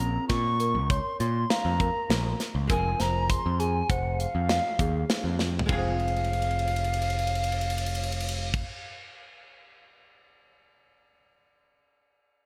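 A bright, 1980s-style digital sheen and a lush hall reverb frame this tense, intricate progressive instrumental, cut from a longer piece and moving in an uneven 5/4 with a straight feel. A silver concert flute carries the melody with an airy, vibrato-laden tone, a crisp attack and softened highs, its line trailed by delay. Beneath it, a celesta spins delicate, bell-like arpeggios with its own delay, while a dark, clean archtop guitar, miked and amplified, sits in the background with hollow-body accompaniment thickened by ensemble chorus. An overdriven picked electric bass stands up front with a warm, overdriven tone, and a tight metal drum kit with a medium-tuned snare and tight kick drives things through gated reverb, breaking into fills around 5.4 seconds and again through much of the second half. The harmony shifts from Bbm7 to Fm, and after the other parts stop near 8.6 seconds the drums carry on alone until 10.2 seconds.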